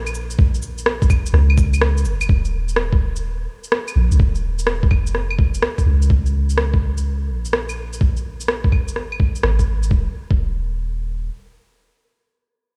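A swung 126 BPM future garage groove in Eb minor, cut from a longer piece, pairs a muffled, thumpy electronic kick drum, compressed and re-recorded in a large room, with electronic shaker, claves, cabasa and rim click from 0.1 to 9.9 seconds and a deep, round, sine-like 808-style bass that sits up front across a melancholic, ghostly mix heard through a big sound system in a bare stone room, with a brief break at 1.8 seconds.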